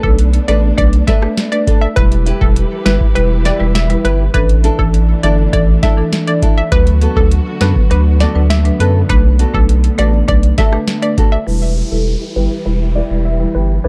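A straight 4/4 dancehall groove at 101 BPM comes from a booming analog drum machine: a deep kick, crisp snare, rim click and metallic hats sit up front with a tape-warm edge. Beside it, a thick, saturated sine sub bass lands just as forward. The mood is sultry and tough, and the production is dark and warm, set in a small room. A buzzing marimba struck with hard mallets plays dry, woody accompaniment, while a round, detuned analog pluck carries the melody with chorus, delay and a filtered, bright bite. A fingerpicked nylon-string guitar adds arpeggios with audible finger squeak and delay, and a shadowy, bowed string section pumps lush sustained chords from the background over Bm7, Em, Asus4 and D6. The drums stop at 11.4 seconds, and a downlifter enters at 11.5 seconds amid a filter sweep as this cut from a longer piece settles on Em.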